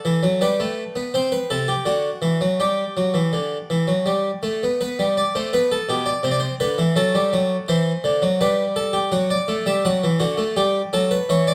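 Close, detailed microphones place a brilliant, plucked harpsichord up front, its full tone carried into a moderate stone room that lends a 1.3-second reverb tail. This is a lively, elegant classical excerpt in baroque style, a two-part invention in G major played at 83 BPM in a straight 3/4. The solo harpsichord, a Flemish-style instrument with octave strings, spans B2 to F#5 and sounds dry and immediate despite the surrounding space. Its harmony moves through G, Am7/C and D before settling back on G, then colours the middle passage with Cmaj9 and D7/F# on the way home. A final section arriving at 9.1 seconds passes through D/F# and closes on Gmaj9 before the clip, cut from a longer piece, ends at 11.5 seconds.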